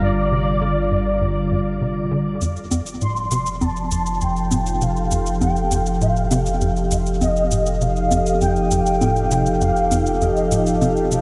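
A smooth, expressive synth lead carries the melody from the start, its sawtooth-and-triangle tone soft in attack and touched with vibrato, sitting up front in an ensemble chorus, shimmer reverb and tape echo. This short cut from a longer piece of ambient, sequencer-driven space music moves at 100 BPM in a straight 4/4, its hypnotic, mysterious mood resting on a shift from Gm7 to F7 at 2.4 seconds. Beneath the lead, a detuned, sweeping resonant pad holds sustained chords with a slow filter swell, while a tight, punchy sequencer bass drives a dark, plucky riff through ensemble chorus and tape echo. A deep, round sine sub bass anchors the low end throughout. Cabasa and congas with an electronic, analog character enter at 2.4 seconds, carrying their own tape echo, and the whole dreamy mix is soaked in a huge ambient reverb with an 8.1-second decay.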